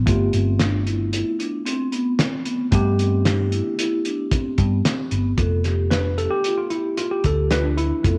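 A worn, slightly out-of-tune tine electric piano and a dark, round hollow-body bass open this bright, driving progressive instrumental excerpt in 5/4 at 113 BPM, joined at once by mellow soft-mallet vibraphone arpeggios and a muffled, gritty, cloth-damped drum kit with fat snare and tight kick, all in moderate plate reverb over G7 until the electric piano takes a solo at 5.4 s as the harmony shifts to G7/F.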